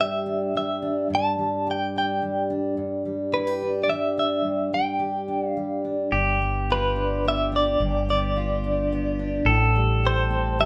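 Intimate and reflective, this excerpt of an acoustic folk-pop ballad in 3/4 sets a bright, clean electric guitar melody with tremolo over a full-bodied fingerpicked steel-string acoustic guitar in a small room, until a warm pedal steel guitar with volume swells and slide and a dark, round fretless bass join at 6.1 seconds as the harmony moves from Em7/G to G7 and then Am7.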